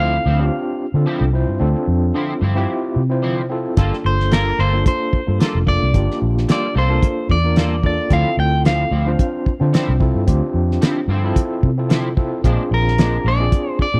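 Brooding and soulful, this short excerpt of straight-eighth soul blues in D minor moves at 111 BPM with a light sixteenth-note swing. A slightly broken-up, twangy electric guitar sings the melody with slapback echo over a barky, overdriven tine electric piano pulsing with fast tremolo, while a bright, picked clean guitar adds chorused stabs and a round, foam-muted fingered bass sits up front. A muffled, cloth-damped drum kit with a fat snare and tight kick joins at 3.8 seconds, all in a dry, close 1970s-style studio sound moving through Dm9, Gm9 and Bb7.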